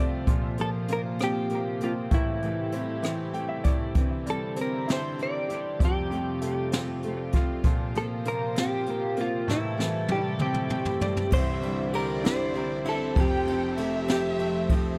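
A brilliant grand piano, soft-attack bowed strings and a fingerpicked steel-string acoustic guitar playing arpeggios open this tender, romantic six-eight pop ballad together at 65 BPM in C mixolydian, the latter two set in the background, with dub echo trailing the piano and acoustic guitar. Brushed jazz drums with dark cymbals, a high-tuned snare and a boomy kick sit up front beside a clean, compressed electric guitar melody recorded direct and colored by analog chorus and dub echo, and the drums play a fill from 9.5 to 11.3 seconds as the chords cycle through Bbsus2, Am7, Cadd9 and Fadd9. At 11.3 seconds a lush violin section with expressive vibrato adds a second line on top, all within an echo-heavy mix with light reverb.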